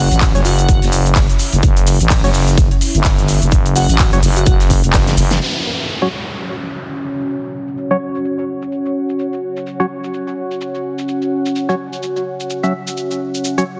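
A growling, thick FM bass with tube saturation and sidechain pumping drives this swaggering, aggressive bass house excerpt at 127 BPM with swung 16ths, joined by a punchy, tape-warm electronic kick, a big-room dance kit with a huge snare and crisp hats, a polished gated 80s kit in a bright stone room set in the background, hollow, dark organ stabs with tape echo, a soft, dreamy sine lead drifting in the background, and a deep, moody sawtooth pad with chorus and reverb, until by 5.4 seconds the bass, kick and gated kit have dropped out as a downlifter enters and filter sweeps work over the drums and stabs, with a second mellow pad layer arriving at 7.2 seconds.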